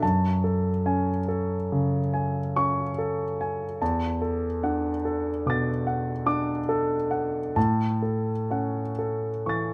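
Luminous and dreamy, this short fragment of impressionist classical solo piano drifts in 9/8 at a slow 41-50 BPM in dotted quarters, with free rubato and tuning at A4 = 442 Hz. A clear, intimate grand piano sits up front and spans E2 to A6, its audible action noise lending a natural closeness as the harmony moves from F#madd9 to E9sus4 at 3.8 seconds and settles on A6 at 7.6 seconds. Light reverb softly surrounds the playing in this passage, cut from a longer piece.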